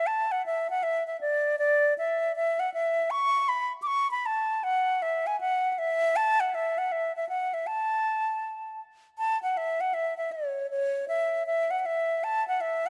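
A wooden flute carries this lively, rollicking Celtic folk excerpt entirely on its own, playing from the start to its close at 12.9 seconds. Its tone is woody, warm and airy, close-miked and placed up front, with touches of vibrato and tongued notes. The melody sits between C#5 and D6, moving at 158 BPM in 4/4 with a swung eighth-note lilt that gives it a buoyant, dancing feel. The tune runs through one section and then begins it again at 9.2 seconds, cut from a longer piece. A light reverb lends the solo line a little space around it.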